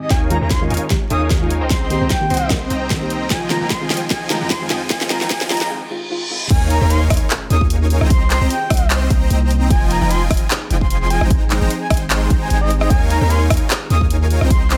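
A breathy, flute-like synth lead with vibrato carries the melody across this dreamy, emotional future bass excerpt, set in a half-time feel with a light swing and treated with lush chorus, digital delay and sidechain pumping. Beneath it, a huge detuned supersaw riff moves through a filter sweep during the build-up, alongside a faint ethereal pad, a soft round pluck that plays until 6.4 seconds, a punchy layered kick, and a pop kit of fat snare, bright hi-hats, handclaps, rim clicks and crash cymbal with a running drum fill. A very quiet riser and reverse cymbal lead into an impact at 6.5 seconds, where the drop lands, while a deep, mellow, sine-toned 808-style bass sustains underneath from the opening onward.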